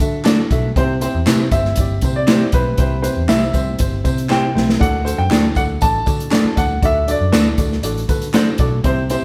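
A punchy, up-front swinging big-band drum kit drives this short, uplifting 1960s-style soul clip at 119 BPM in D mixolydian, its airy, polished sound breaking into a fill at 4.3 seconds. A concert grand piano carries a smooth, vintage-toned melody until 7.8 seconds over an upright piano's woody, boxy accompaniment, a dark, round, foam-muted picked electric bass, and slightly broken-up, lo-fi electric guitar stabs that enter at 0.2 seconds. Tambourine, maracas and group handclaps sit distant in the background, and the band sounds as though it is playing live in one room with moderate reverb, moving between D and C chords.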